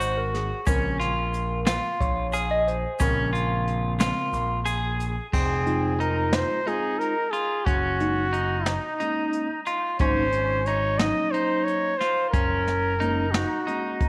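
Progressive instrumental band music in 7/8 at 180 BPM in Bb minor, tense and driving, with a phased tine electric piano taking the lead over a twangy, compressed clean guitar playing arpeggios through spring reverb and slapback echo, round overdriven picked bass, a dark brushed drum kit with a boomy kick, and a grainy tube shaker set far back until 5.2 seconds. At 5.3 seconds a mellow trumpet enters up front with light vibrato in a classical style, carrying the melody over chords moving from Fm7 to Gb6 and Ab7sus4. A ringing, very quiet vibraphone adds a second line at 13.3 seconds, all within a moderate echo-chamber ambience in this excerpt cut from a longer piece.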